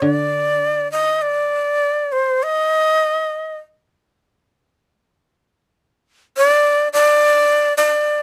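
In a free, rubato 2/4, this austere and calm fragment of Japanese chamber music sets a breathy, bright bamboo shakuhachi up front, its reedy melody carrying vibrato and a tongued chiff, over a mellow, woody koto played with fingerpicks that accompanies only until 3.4 seconds, all heard through close, detailed microphones with little reverb.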